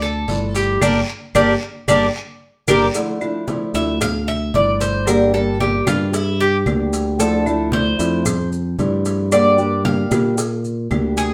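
A live, roomy band sound with wet studio reverb carries this sultry Cuban son and guajira passage in D minor at 113 BPM, cut from a longer piece, as it sways between Dmadd9 and Gm. Up front, a metallic, double-strung Cuban tres plays arpeggios that turn into a solo from 2.9 seconds, over a boxy, dark fingerpicked ladder-braced acoustic guitar and a bright, direct fingered electric bass. Behind them sit thick-skinned, low-tuned congas, a tight high cowbell and woody claves. Close and dry, grainy maracas join a raspy guiro that plays only until 2.8 seconds, with a band accent and drum fill leading into the solo.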